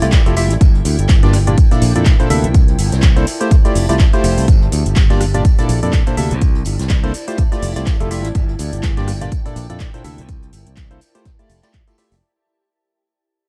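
Piano house at 124 BPM with a swung sixteenth feel, bittersweet and soulful, cycling through Fmaj9, Gm7, Bbmaj9#11 and C13 in a drop that begins fading out at 4.5 seconds. A hollow, percussive organ stab carries the riff through analog chorus, cassette tape, tape echo and sidechain pumping, over a bright, growly fingered electric bass saturated by tubes and set up front beside a punchy, tape-warm electronic kick. A house kit of handclaps, metallic hi-hats, rim click and shaker sits in a small room with a distant, rolled-off brushed jazz kit of hi-hat, high-tuned snare and tambourine, while a cloudy, evolving granular pad drifts in the background with its own reverb and pumping, all within a dark production.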